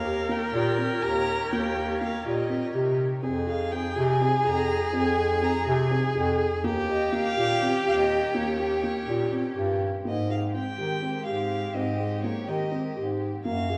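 An up-front, classical-style bass clarinet carries the bass beneath a floating, sul tasto violin melody and a nasal, vibrato-rich viola second line that drops out at 9.8 s, while a dark, felt-muted upright piano plays arpeggios and a lush, distant string section holds sustained chords in the background, all in a hypnotic, pensive contemporary chamber piece in 7/8 at 246 BPM counted in eighths, moving from Eb7 and Fm7 to Abmaj7 at 10.1 s and bathed in the reverberant glow of a recital hall.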